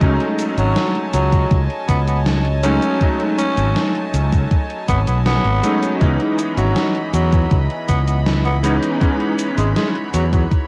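A hazy cassette home recording bathed in light digital ambience carries this melancholic 80 BPM vaporwave excerpt, where a growling, breathy tenor saxophone with tape echo enters at 0.6 s over a clangy electric grand piano treated with ensemble chorus and tape echo, floating bowed strings, a round, dark fretless bass, a thumpy electronic kick and a gated 80s drum machine of cabasa, hi-hat and snare with gated reverb, as the harmony moves from B13 to C#m9 at 6.0 s.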